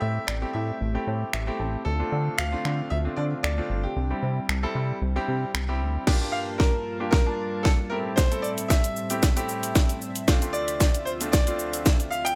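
Bittersweet yet confident, this short dance-pop excerpt moves at 114 BPM in a straight 4/4 in G dorian, cycling through Am7, Dm7 and C before turning to Gm7. A bright, brilliant grand piano carries the melody with a long, open sustain and adds a quick fill early on, while a clear concert grand with deep bass and short sustain plays polished accompaniment that pumps with the sidechain. Beneath them, a shimmering pulse-width pad with a soft attack holds sustained chords, and a glossy, retro synth bass with a plucky filter and chorus drives the low end up front until it drops out at 6.0 s. The layered house drum kit, with its cracking snare, finger snaps, shaker, hi-hat and crash over a punchy kick, sits prominently in the mix and carries a tape-warm character. From 6.1 s the track shifts into a build-up with a drum fill running to the end, all set in a digital ambience.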